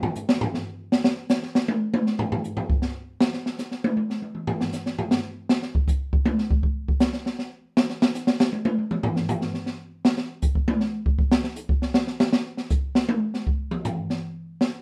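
A swung waltz pulse at 158 BPM in 3/4 carries this short jazz clip, its eighth notes lilting with a gentle swing. The mood is relaxed and playful. A lone open jazz drum kit of hi-hat, kick, snare and toms plays throughout, from 0.0 to 14.7 seconds, as an unaccompanied drum solo. The kit sits up front with an acoustic, small-room character: dark and smooth overall, with a high-tuned snare, a boomy kick and a rolled-off top end. A moderate studio reverb gives the sound a short, natural tail, and the passage, cut from a longer piece, restates its opening section at 12.3 seconds before breaking off.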